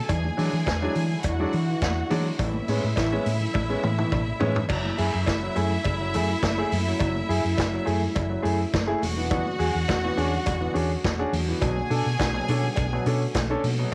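A round, dark hollow-body electric bass anchors this sultry, driving disco groove at 104 BPM, joined by a gritty vintage drum kit with a punchy kick and dark cymbals that plays a fill from 3.5 to 4.7 seconds. A smooth concert grand piano comps through chords moving from E9 and Amaj7 to F#m7, E13 and Bm7. Above it, a lush, clear string section carries a second line, while a mellow French horn section sustains chords in the background, with very quiet, bright congas and a metallic cowbell adding percussion in light studio reverb.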